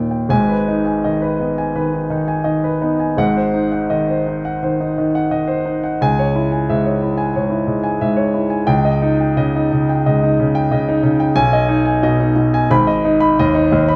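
A concert grand piano opens this brooding, passionate romantic character piece in G# minor, its deep bass and natural, up-front tone carrying the solo across a range from G#1 to B5. The 4/4 pulse flexes with rubato between 77 and 92 BPM as the harmony moves from G#m through G#7 to C#m and D#7/C#, settling back on G#m by 12.7 seconds. A moderate stone-room reverb surrounds the piano in this short passage, cut from a longer work.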